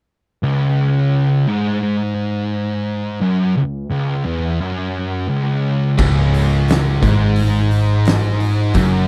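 Stoner and doom metal at 87 BPM in C# minor, this ominous, sludgy fragment opens with two thick fuzz guitars playing a low riff up front, one warm and one dark, before a bright, double-tracked high-gain guitar, a round, foam-muted picked bass and an oversized low-tuned drum kit with a boomy kick, fat snare and dark cymbals in a big, pumping room all crash in at 6.0 seconds as the harmony settles onto a C#5 power chord.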